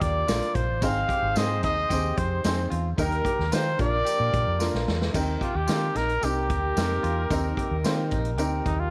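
A straight soul groove rides on a distant, roomy big-band drum kit with a punchy kick, crash cymbal and hi-hat, a dark, round, foam-muted electric bass up front, and a jingly, close tambourine, giving this uplifting, danceable 1960s-style excerpt its bounce. A woody, slightly detuned upright piano comps alongside a slightly broken-up guitar riff from a small old amp and a mellow, tight horn section doubling in octaves in the background. A warm, lightly vibrato trumpet carries the melody, and after a drum fill at 4.6 seconds it takes a jazzy solo from 5.1 seconds, all set in light studio reverb.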